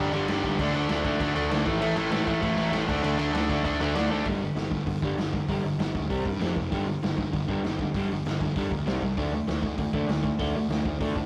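Rowdy and upbeat, this straight-ahead punk rock excerpt charges along at 196 BPM, with a crunchy, bright overdriven guitar riffing up front over power chords from G5 through D5 and A5, joined by a second distorted electric guitar that drops out at 4.3 seconds just after a drum fill at 4.1 seconds, while a round, fuzzed-out picked bass and a raw garage drum kit with a punchy kick, medium-tuned snare and gritty, rolled-off cymbals drive the whole thing in a rough rehearsal-room sound touched with light reverb.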